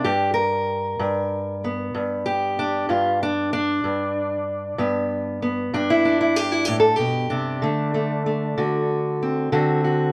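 Laid-back and swaggering, this short fragment of acoustic country blues in 12/8 features a solo fingerpicked steel-string parlour guitar, dark and woody with the boxy character of old strings, sitting up front in a moderate studio reverb as it rests on G before turning to D7 at 7.6 seconds.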